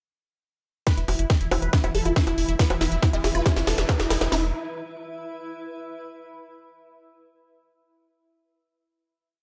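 A light digital reverb frames this brief, hypnotic psychedelic trance piece at 139 BPM, where a build from 0.9 s brings in an up-front overdriven drum-and-bass kit with tight four-on-the-floor kick, cracking snare and bright hats, a second overdriven kit adding bongos and programmed backbeat, a deep, round analog bass rolling in sixteenths, a woody wave-folded pluck looping a 12-step acid line, a punchy detuned supersaw stab repeating a riff with phaser and tape echo, a mellow pulsing gated drone, a very quiet squelchy resonant blip pluck, and a faint riser from 2.4 s, while a blurred granular cloud pad enters at 2.8 s and carries the final chord from 4.3 s to the close.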